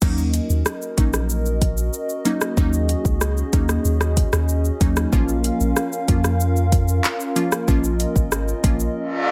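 A punchy, deep sub bass with a pitch-drop attack sits up front alongside an electronic afro-pop drum kit, driving this hypnotic, tough dancehall excerpt cut from a longer piece. The kit pairs a deep kick with metallic hi-hats, handclaps, rim clicks, shaker and crash cymbal, all carrying a tape-warm, produced sheen. Beneath them, a glassy, crystalline wavetable pluck plays detuned accompaniment with a filter sweep and chorus, pumping against the sidechain. A hollow, flute-like pad holds dark, soft sustained chords with a slow attack and long release, also chorused and pumping. The harmony moves from Ebm7 to Bbm at 5.1 seconds, and as the pluck, bass and drums drop out, a short break brings in a reverse cymbal at 9.1 seconds over the lingering pad. The mix is dry, with little reverb, keeping the low end close and forceful.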